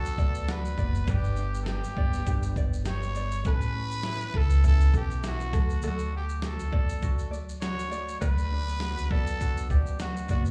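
Sunny and easy-going, this short cut of acoustic pop in D major moves at 101 BPM with a light 16th-note swing, as a raspy, growling solo trumpet with vibrato carries the melody over a thumb-plucked ukulele and a full-bodied, fingerpicked nylon-string guitar playing background arpeggios (the three sharing a slapback echo, with added tape echo on the guitar), a woody pizzicato upright bass up front, and a compressed, sampler-style drum kit with thumpy kick, fat snare and shaker entering at 0.1 s, the band heard as if live through a club PA with small-room reverb over chords of Bm/D, G, Aadd9 and D.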